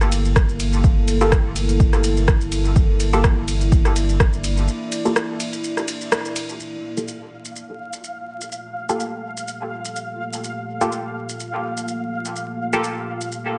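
This dub techno cut, deep and meditative, moves at 125 BPM in 4/4 with a light swing on the sixteenths, resting on a Gm9 chord in G dorian. A round analog bass on a low G and an overdriven electronic kick anchor the opening, while a deep house kit of hi-hat, ride, rim click and shaker, also overdriven and re-recorded in a small room, runs almost the whole way through. A dark, moody sawtooth pad holds sustained chords with chorus, reverb and sidechain pumping, and a muted, detuned dub chord stab with a short filter pluck arrives at 1.2 seconds, colored by chorus, phaser and dub echo. The bass and kick drop out for a break at 4.7 seconds, with a band accent at 6.1, and from 6.6 seconds a filter sweep moves across the pad. A flickering, grainy granular texture enters up front at 7.1 seconds, floating on its own reverb above the mellow stabs. The whole recording carries light reverb, a veil of vinyl crackle and a dulled top end, and it is cut from a longer piece.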